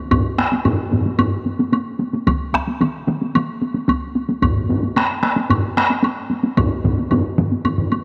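Heavy-stick solo taiko drums, a woody, close and dry woodblock and taiko ensembles struck with hard and heavy sticks (one close and up front, another distant in a large room yet up front) open together in this driving, powerful Japanese traditional taiko passage in a straight 4/4, cut from a longer piece and set in moderate plate reverb, with a further taiko ensemble joining at 2.3 seconds.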